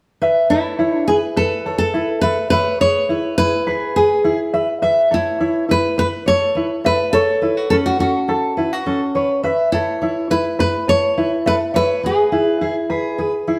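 A thumb-plucked tenor ukulele and a fingerpicked jumbo steel-string acoustic guitar open this easy-going, heartfelt pop piece at 0.2 seconds, moving at 104 BPM in a straight 4/4 feel in A major. The ukulele sits light and up front as accompaniment, while the steel-string guitar spins arpeggios with a full-bodied, fresh-strung ring. At 0.5 seconds a deep classical nylon-string guitar takes the melody, fingerpicked and up front, with audible finger squeak adding a human touch to its warm tone. The chords cycle gently through Asus2, E, Asus2, F#m and back to Asus2 and E. The trio plays live in one room, wrapped in a wet stone-room reverb with a decay of 1.1 seconds. The recording is a fragment of a longer piece, ending at 13.6 seconds.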